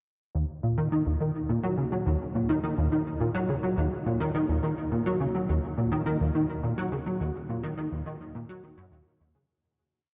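Expansive and cosmic, this short ambient piece in Eb minor moves at 105 BPM in a straight 4/4, tuned slightly sharp to A4 = 442 Hz. A plucky analog bass plays alone from 0.3 to 9.4 seconds, ranging from Eb2 to Gb3, up front and punchy with sawtooth, pulse and triangle tones, ring modulation and a fast-attack filter pluck, its repeating 12-step loop drifting against the bar through ensemble chorus and delay. A cathedral reverb with a 6.5-second tail places it in a vast, echoing space, with a dull cassette-tape sound and a fade-out starting at 6.4 seconds.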